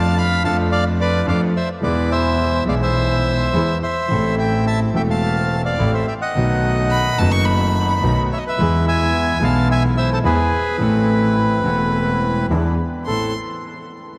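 A reedy, dark bandoneon carries the melancholic, tense melody of this rubato tango in A minor at 107 BPM from the start, with tape echo, over an intimate, vintage-sounding grand piano with deep bass, audible action noise and analog chorus, and a bowed double bass with smooth vibrato. A second bandoneon adds airy stabs in the background, while a bowed violin with light vibrato sits close and enters briefly at 6.9 s with a high second line, returning at 13.1 s as the harmony settles on A minor. A huge reverb soaks the whole mix in a dreamy haze, and the recording is cut from a longer piece.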